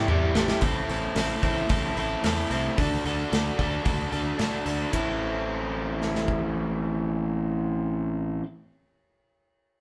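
Brooding and driving, this classic rock excerpt in A dorian at 111 BPM opens with a drum fill from a big acoustic kit with a boomy kick and medium-tuned snare, while a bright, overdriven, double-tracked electric guitar riff sits up front over a dark, round, punchy fuzz bass as the chords move from C through Am to D, all captured as a band playing live in one room with moderate studio reverb, until the drums drop out at 6.4 seconds and guitar and bass carry on to the end.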